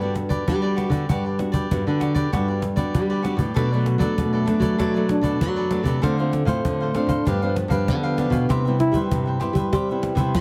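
Joyful and lively, this short fragment of samba and choro moves with a straight four-beat feel. A crisp, picked cavaquinho and a dark, fingerpicked classical nylon-string guitar carry the accompaniment, the guitar sitting up front with audible finger squeak. A second nylon-string guitar, warm and fingerpicked, holds down the bass, while a woody cajon with faint snares sounds as if played in a small room. The harmony moves from Gmaj7 through Bm7, Dm7 and G7 to Cmaj7, and a breathy trombone enters at 4.2 s for a jazz-style solo line with a dark tone, light vibrato and a smooth top, ending at 9.0 s. The whole mix has light reverb and a heavily compressed, radio-like sound.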